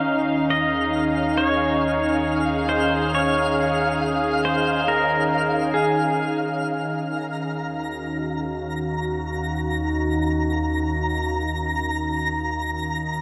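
Bathed in a huge, wet reverb with a 7.3-second tail, this serene ambient piece unfolds slowly at 68 BPM in Eb minor, in straight 4/4 time. A warm, smooth analog pad sits up front with sustained chords, its detuned sawtooth and triangle tones warbling through a lush chorus with soft attacks and long releases. The harmony moves from Dbadd9 over Eb to Ebm9 at 6.7 seconds. Beneath it, a round, deep bass built from triangle and sine tones holds a dark, low Eb and fades out across that opening stretch. A clean electric pedal steel guitar, played with fingerpicks, slide and volume swells, sings a compressed melody through a diffuse ambient delay until 6.4 seconds. From 0.2 seconds, a bright, sparkling granular texture of FM tones with an octave-up shimmer glints above in its own reverb, as this fragment of a longer piece drifts onward.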